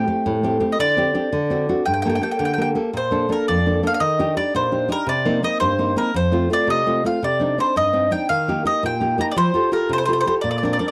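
Italian folk in the manner of a serenade, this short passage cut from a longer piece feels romantic and lively, moving at 112 BPM in a rubato 6/8 and centred on Bb major. The mandolin carries the melody with a round, picked tone, its double strings ringing up front in the mix. Beneath it, a deep classical nylon-string guitar supplies fingerpicked accompaniment, with an audible finger squeak adding intimacy. The harmony opens on Am7, D7 and Gmadd9 before a new section begins at 2.9 seconds on Bbmaj7, then travels through Ebmaj7, Cm7 and F toward a closing Fadd9. Both instruments sound warm and present in a dry, close studio recording with a 1970s character and very little reverb.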